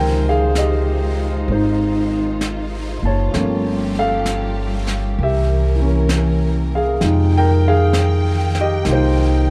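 A woody, thumpy pizzicato upright bass with gut strings sits up front in this intimate, late-night jazz ballad at 65 BPM, swung in 4/4 and cut from a longer piece. A warm, natural grand piano plays up-front accompaniment over chords moving from Dbmaj9#11 through Gm7b5 and C7b9 to Fm9, while a lush bowed string section holds soft-attack chords with expressive vibrato. An airy brush kit with a high-tuned snare and hi-hat enters at 0.6 seconds, all under light reverb in a dark, warm production.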